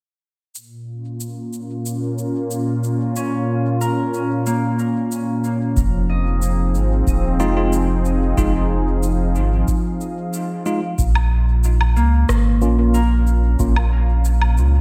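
A detuned, warbling analog pad with subtle chorus opens this deep, spacious ambient dub excerpt in Bb minor at 92 BPM, alongside tape-warm electronic cabasa, woodblock and rim click with dub echo in a small room; a mellow, ringing fingerpicked Celtic harp then adds low-pass-filtered arpeggios from 3.2 seconds, and a round, soft sub bass up front and a background electronic kick join at 5.8 seconds, followed by clean, bell-like tine electric piano stabs with dub echo whose filter sweep begins at 11.0 seconds, all set in light digital reverb.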